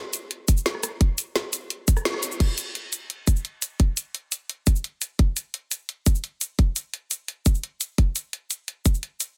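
The sound is dense and heavily limited, with a light reverb and a close, small-room character on the drums. This is a short cut from a longer drum and bass track in straight 4/4, and its mood leans dreamy and melancholic. A layered electronic drum kit starts at 0.1 s, carrying a woody snare, bright hi-hats, rim clicks, cabasa and crash cymbal, all sitting up front. A tight electronic kick joins at 0.5 s and stands as the loudest part of the mix. The opening drop carries a band accent at 2.1 s, after which the groove moves into a new section that carries on to the end.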